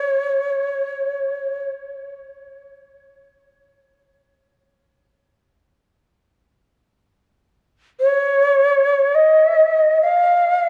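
In free time, this spacious, peaceful world meditation excerpt in Db major pentatonic, tuned to A4 = 441 Hz, features a solo Native American-style cedar flute with a mellow, woody, pure tone, vibrato and a soft attack, sounding from 0.0 to 1.7 seconds and again from 8.0 to 10.7 seconds between Db5 and F5, trailed by a diffuse ambient delay and bathed in a wet concert hall reverb within a dark, warm production.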